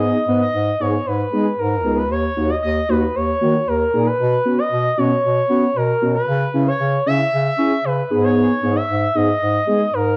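An expressive sawtooth lead with portamento sits up front in this nostalgic, upbeat synth-pop excerpt at 115 BPM in a straight 4/4, carrying the melody between A#4 and E5 with a smooth tone, vibrato and a fast attack. Beneath it, a dark, round synth brass built from detuned sawtooth tones with a filter sweep holds sustained chords until 9.8 seconds. A mellow bass clarinet in a classical style supplies the bass line from C#2 to C#4 and is also placed up front. The harmony moves through G#m, D#m7, Bsus2 and C#m before returning to G#m. Chorus and cassette tape colouring shape the lead and the brass, while a moderate spring reverb and the home cassette recording give the piece a homespun, faded character.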